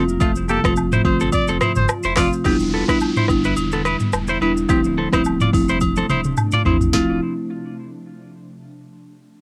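A woody marimba played with medium mallets opens this smooth, mellow afrobeats excerpt in D minor, alongside a bright, twangy clean electric guitar riff with analog delay, a round sine sub bass and an ethereal, airy pad that sits in the background with ensemble chorus, phaser and its own reverb. An electronic afro-pop drum kit with a deep kick, sharp snare, metallic hats, handclaps, rim clicks, shaker and toms sets a relaxed 107 BPM groove in 4/4 with a gentle swing on the sixteenths, while close, dry agogo bells and woodblock add acoustic color. A clear trumpet with light vibrato and a vintage, cassette-tinged tone carries the pop-style solo melody from 0.5 to 2.3 seconds over an F chord. The harmony then moves through Em7 and Dm7 as an electronic downlifter enters at 2.4 seconds, and the drums play a fill starting at 5.8 seconds. The whole excerpt has the lo-fi character of a home cassette recording with light reverb.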